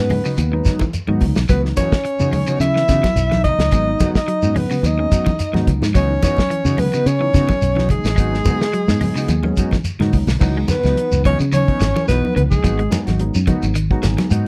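Afrobeat at 108 BPM in C# minor, this excerpt from a longer piece feels intense and hypnotic, with a light sixteenth-note swing riding a dry, close 1970s-style studio sound. A clear alto saxophone with vibrato and slapback echo carries the melody over a breathy, whispered trombone playing a second line below it, both horns stopping at 13.0 seconds. Up front, a round, dark fingered electric bass and a soul drum kit with dark cymbals, a medium-tuned snare and a tight kick anchor the groove, joined by a grainy shekere and, in the background, hard-handed congas with a thick skin. Further back, a mellow, clean electric guitar plays stabs through analog chorus, a slightly broken-up guitar picks arpeggios, and a tine electric piano with medium tremolo fills out the accompaniment. The harmony moves from G#m7 to C#m11 and back, with a drum fill leading into a new section at 10.4 seconds and a short electric piano fill closing the passage.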